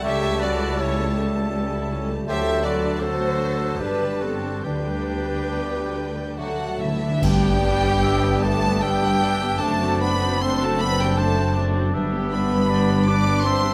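A serene, tender passage from a slow romantic movement for symphony orchestra unfolds in a flowing triple metre with gentle rubato, taken from a longer piece. A rich, expressive violin section carries the melody up high with close, bowed vibrato, while a lush second violin section, an airy, hollow flute and a clear clarinet weave supporting lines in the background, joined by a warm solo oboe. A very quiet viola section and a mellow bassoon fill the middle, mellow French horns hold sustained chords, and a faint, ringing harp spins fingerpicked arpeggios. The bass rests on a smooth cello section and a clear, even double bass section, with a mellow trumpet adding stabs until 6.8 seconds. Timpani struck with hard mallets enter at 4.6 seconds alongside bright cymbals and concert bass drum, followed by a timpani fill that leads into a full-band accent at 7.2 seconds as the second section begins. 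The orchestra sits in a moderate concert hall reverb, giving the strings and winds a spacious, blended glow.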